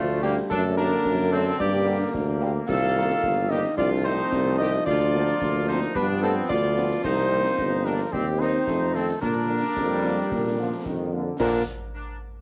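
Heard through the soft haze of a home cassette recording in a small, lightly reverberant room, this rousing, festive military-style march for wind band moves at 110 BPM in a straight 2/4 in Bb major, with a punchy, mellow cornet carrying the melody up front through tape coloring and analog delay over a present, warm tuba bass, while a dark, very quiet euphonium and a distant, soft-attacked woodwind section (also touched by tape and delay) share the second line, a tight trombone section holds sustained chords with light vibrato in the background, a hushed French horn section adds accompaniment from 0.2 seconds, and concert snare, clash cymbals and bass drum bring a gritty, vintage sampler edge and shadowy cymbals to this short cut from a longer piece.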